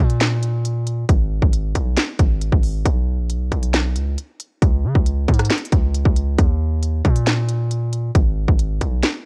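A distorted 808-style bass opens this short trap excerpt at 0.0 seconds, heavy and saturated, its sine tone carrying a layer of noise with a fast attack that decays, ranging from Ab1 to Db3. A trap drum kit joins at 0.1 seconds with electronic kick, snare, hi-hat, handclaps and rim click: the kick is hard-clipped, the snare sharp and the hats crisp. The hip hop groove runs at 136 BPM in 4/4 with a half-time feel, tuned to A4 = 443 Hz, and the mood is melancholic and eerie. Both parts sit up front in a dry, gritty sound with little reverb, and the whole piece has a cassette-tape character. The bass stays aggressive throughout, and the drums run on until 9.1 seconds, just after the bass stops at 9.0.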